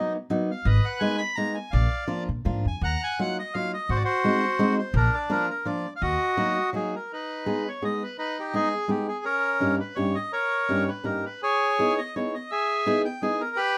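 A reedy, airy bandoneon carries the melody from the first moment, over a dark, fingerpicked steel-string acoustic guitar, in a bittersweet, whirling musette waltz cut from a longer piece. The swung, rubato three-beat lilt gives the dance a loose, breathing feel. At 0.7 seconds a woody pizzicato upright bass joins, sitting low and close, and it drops away at 6.1 seconds. At 7.1 seconds the music turns to a new minor key for a second section, with the bright bandoneon and the guitar carrying on as a duo. All three parts sound up front, with a light reverb adding a touch of space around them.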